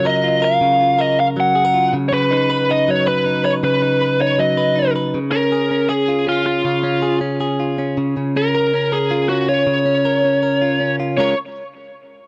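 Indie pop, bright and nostalgic, in which a biting, overdriven lead guitar carries the melody over twangy, compressed arpeggios from a clean electric guitar recorded direct, both parts picked and up front in a dry, close, 1970s-style studio sound touched with digital ambience, with the harmony moving from Ebmadd9/Db through Cb/Db to Db6 at 5.1 seconds before both guitars stop near 11.4 seconds.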